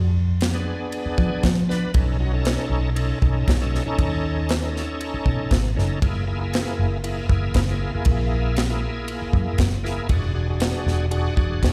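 Over a straight-eighth groove at 118 BPM with a light sixteenth-note swing, this swaggering, rollicking soul-blues excerpt opens with a dark, round, foam-muted picked electric bass, joined at 0.4 seconds by a tight, dry funk drum kit of kick, bright-cymbaled ride and medium-tuned snare, and at 0.5 seconds by a shouting tonewheel organ, lightly overdriven with chorus vibrato, slow rotary speaker and slapback echo, as the chords move from Fdim7 through B9 and F#9 to E9 in a live, hall-tinged sound heard through a venue PA.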